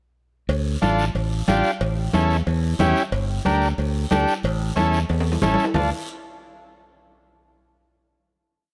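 Cumbia with a fiery, danceable drive, this short piece sets a bright, growly fingered electric bass and a vintage, buzzy combo organ up front, the bass playing a punchy cumbia figure while the organ, lightly touched with vibrato, chops out rhythmic triad chords over a Dm, A7, Gm, A progression. Behind them, ringing, hard-hand congas sit in the background with close, dry metal-shell cowbell and timbales and a raspy guiro. A drum fill at 5.1 seconds leads into a final Dm chord at 5.8 seconds, all in a lightly reverberant room with a faint mains hum.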